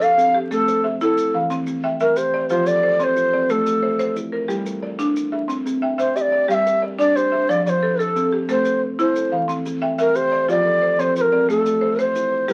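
A hollow, airy cedar flute sits up front and carries the melody, its crisp, chiffy attack, vibrato and lifted highs floating over a rippling, hypnotic cycle in the southern African mbira tradition. Beneath it, a marimba struck with hard mallets plays buzzing, boxy arpeggios on hardwood bars, and a kalimba adds soft, ringing fingertip plucks from its solid board, the two filling out a woody, arpeggiated texture. Grainy maracas sit close and dry far down in the mix. The piece moves at 120 BPM in a straight 12/8, circling through F, A minor, C and G minor. A modest small-room reverb and the crackle of a very old 78 rpm record give the sound an aged patina across this 12.5-second section cut from a longer piece.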